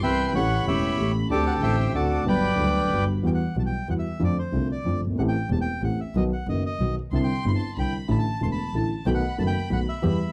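A reedy, bright bandoneon carries the melody up front over a dark, worn grand piano with audible action noise and a clear double bass bowed sul tasto, giving this tense, sultry tango fragment in 3/4 a rubato sway. A warm chamber violin section adds a soft, intimate second line played sul tasto with light vibrato, falling silent at 3.1 seconds as the harmony turns minor and returning at 7.1 seconds. The dry, close sound evokes a 1970s studio, and the piece is cut from a longer work.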